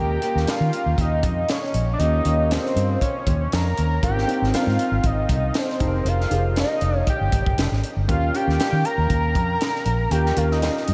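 Upbeat and urban, this polished 1980s jazz-funk pop excerpt moves at 118 BPM in 4/4 with a light sixteenth-note swing, cycling through Eb7, Ab6 and Fm11 before returning to Eb7. A fat, nasal, detuned analog lead with vibrato carries the melody through an analog delay over grand piano voiced with analog chorus, while a dark, round, foam-muted fingered electric bass sits up front and a crisp fusion kit enters at 0.2 s with a punchy kick and high-tuned snare. The whole mix is soaked in a dreamy cathedral reverb with a 6.0 s tail.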